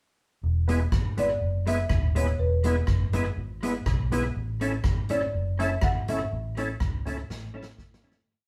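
Joyful and cheerful, this short ska piece moves at 122 BPM in a straight 4/4, centred on E mixolydian with a shift from an E chord to A at 4.4 seconds. A dark, foam-muted electric bass opens at 0.4 seconds, sitting up front with a round, punchy walking line that uses chromatic approach notes. The drum kit, hollow-body jazz guitar and overdriven tonewheel organ arrive together at 0.7 seconds: the drums play a ska beat with a side-stick backbeat, a boomy kick and an airy, polished sound, while the clean, compressed guitar chops on the off-beats and the gritty, thick organ adds off-beat stabs coloured by chorus vibrato and a slow rotary speaker. A woody marimba played with soft mallets carries the melody from 1.2 seconds in mellow, rustic call phrases built on short motifs. The band sounds as if it is playing live in one room with a wet studio reverb, and the piece fades out over its last two seconds as a drum fill closes it.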